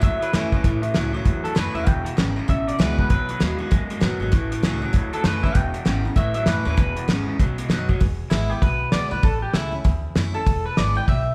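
Rockabilly at a swung 196 BPM in E major, this rowdy, retro passage from a longer piece is played live by a band in one room with light reverb, moving through A, E and B chords. A twangy, slightly broken-up electric guitar carries the melody through spring reverb, while a second, lo-fi picked electric guitar plays a low riff until 8.0 s, when the lead turns to a clean solo. A bright, full-bodied picked dreadnought acoustic with finger squeak fills the accompaniment over a woody, thumpy pizzicato upright bass and an up-front, cloth-damped drum kit with a fat snare, tight kick and rolled-off top.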